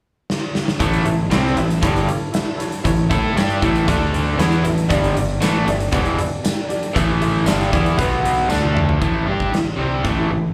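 Classic rock with a confident, sunny mood, heard as a live gig through the venue's PA with club ambience and a light reverb, cut from a longer performance. A huge arena drum kit sits up front with a punchy kick, a medium-tuned snare, hi-hat and toms in a pumping hall sound, opening with a fill at 0.3 s before the band enters. Two overdriven guitars carry the riff: a bright, picked electric guitar with slapback echo, and a raw, lo-fi garage guitar further back, also with slapback echo. Underneath, a dark, round fingered electric bass growls with fuzz and overdrive, while a clear, woody upright piano with audible action noise and long sustain adds accompaniment in the background, colored by its own slapback echo. A jingly tambourine joins quietly at 5.4 s, and after another drum fill the music moves into a new section at 9.0 s, with the guitars and bass carrying on to the end.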